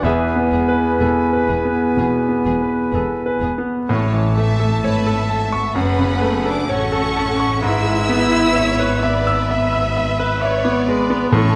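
A bright, brilliant concert grand piano opens with the melody up front beside an expressive, vibrato-laden violin section in this passionate, lyrical romantic movement at a rubato 64 BPM in 4/4, supported by a second, smooth violin line, a lush viola section and a rich, focused cello section over a clear double bass section, while an airy silver flute, a dark clarinet, an oboe, a soft-attack bassoon and a French horn section holding sustained chords fall away by 3.6 seconds, hard-mallet timpani strike in from 3.9 seconds, and moderate concert hall reverb surrounds this passage cut from a longer piece.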